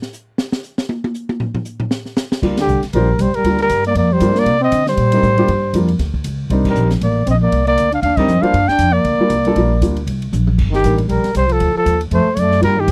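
Small-group jazz in the swing and bop vein, this fast, late-night G minor passage moves at 235 BPM in 4/4 with a light swing feel, cut from a longer piece. An open acoustic drum kit starts alone, with dark cymbals, a high-tuned snare and a boomy kick, soloing until 2.4 seconds, when grand piano and upright bass join. The pizzicato bass sits up front with a woody, growly tone, while the piano comps with a natural sound over chords moving between Gm7 and Cm9 before an Ebmaj7 and a closing D. At 2.6 seconds a breathy, mellow trumpet takes the melody up front with vibrato and scooped notes, and a warm trombone carries a second line below it in the same jazz style. The band hits accents at 2.6, 6.6 and 8.2 seconds, and the drums drop in a fill at 10.3 seconds. The sound is a dry, close 1970s-style studio recording with little reverb.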